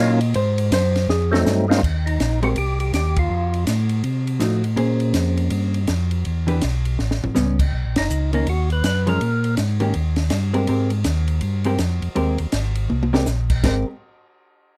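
Greasy and soulful, this short soul jazz organ trio cut swings at 163 BPM in Ab major, with a dark, clean hollow-body jazz guitar soloing over the opening 1.8 seconds before comping throughout, a round, mellow tonewheel organ carrying the bass with chorus vibrato and slow rotary speaker, a fat, percussive tonewheel organ stating brief melody phrases with overdrive and slow rotary speaker, and a dry cocktail drum kit with dark cymbals, high-tuned snare and punchy kick adding fills while the whole band hits sharp accents, all over rich jazz chords like Ab7b9, Bmaj9 and Abmaj9 in a close, detailed recording with light reverb.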